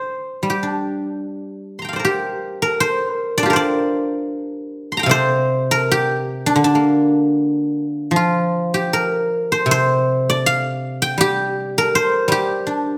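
A solo guzheng carries this short passage of Chinese traditional music, its bright, silvery tone ringing out from the front of the sound as fingerpicks strike the strings. The mood is contemplative and elegant, set in G yu mode with a loose, rubato feel around 78 BPM in 2/4. The instrument spans a broad range from C3 up to C6, and its tuning sits slightly below standard at A4 = 439 Hz. A brief opening idea gives way at 2.0 seconds to a longer second section that runs to the end at 13.0 seconds. A moderate recital hall reverb lets each note bloom and linger in the room, and the clip is cut from a longer piece.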